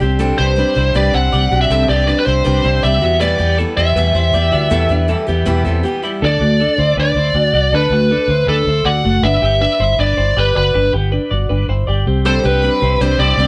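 Indie pop with a youthful, nostalgic mood, this excerpt moves at 159 BPM in a straight 4/4 and sits in D mixolydian, its chords moving from Csus2 and Em to D and G before returning to Csus2. A clean, compressed twelve-string electric guitar plays arpeggios throughout, colored by a harmonic tremolo. Beneath it, a vintage foam-muted fingered electric bass sits up front with a round, dark, amped tone. A picked steel-string acoustic guitar provides accompaniment until a short break ends at 6.2 seconds, then drops out and returns at 12.2 seconds. Entering at 0.4 seconds, a smooth overdriven lead guitar carries the melody, its shadowy, picked tone placed prominently in the mix. The band sounds as if playing live together in one room, with moderate studio reverb giving the performance a natural sense of space.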